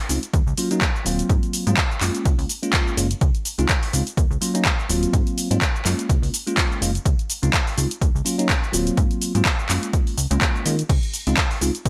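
A plucky analog bass, mellow yet punchy with a fast attack, decaying filter pluck and moving notch, drives this funky, sensual filtered disco house excerpt, cycling through Ebm7, Ab13, Gbmaj9 and Dbmaj9 with a pumping sidechain bounce. A bell-like tine electric piano, clean and phased, accompanies the chords, while a tape-warm analog drum machine with handclaps, hi-hat, shaker, crash cymbal and gated reverb is joined by an up-front electronic kick that enters at 0.3 seconds. The production is bright and dry in a 1980s digital style, with a swung sixteenth-note feel.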